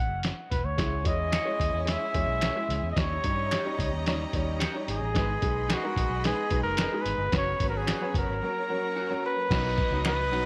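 Uplifting and danceable, this excerpt of uptempo 1960s-style soul moves at 110 BPM in B major, with a mellow, forceful trumpet up front carrying the melody with scooped notes and tape echo over a dark, foam-muted fingered electric bass and a muffled, overdriven sampler-style drum kit with a thumpy kick. From 0.8 s a distant violin section adds a bowed second line, a woody upright piano and a very quiet tonewheel organ with key click and slow rotary speaker fill in the harmony, and from 1.3 s a slightly broken-up electric guitar with phaser plays stabs alongside saturated finger snaps. The chords travel from F# through C#m, D#7 and G#m to a suspended F# before resolving to B at 9.5 s, all in a small room with light reverb.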